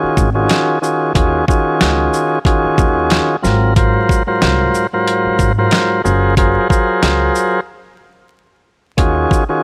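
Boom-bap hip-hop with a tough, dark mood, this brief excerpt from a longer piece rides a swung sixteenth-note feel in 4/4. A full, lightly overdriven tonewheel organ sits up front with vibrato from a stationary speaker, its tone shaded by cassette-tape character and filtering as it moves through Ebm11, Ab13 and Gbmaj9#11 before returning to Ebm11 at 9.0 seconds. Beneath it, a woody, pizzicato upright bass with steel strings adds a thumpy acoustic low end. The sampler-style drum kit is compressed, pitched down and gritty, pairing a thumpy kick and a medium-tuned snare with hi-hat and shaker, and it sits up front from 0.2 seconds. A break arrives at 7.7 seconds, and the dry mix carries a layer of vinyl crackle throughout.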